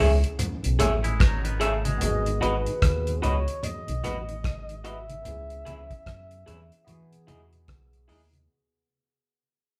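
A breathy, whispered flugelhorn carries the melody over a slow rotary organ, a barky electric piano with phaser and tape echo, slightly broken-up guitar stabs and a deep, round dub bass, while a cloth-damped, thuddy drum kit and tape-echoed congas join almost at once, a twangy spring-reverb guitar arpeggio briefly surfaces at 1.0 seconds, and this smooth, romantic lovers rock fragment fades out in a live, roomy sound.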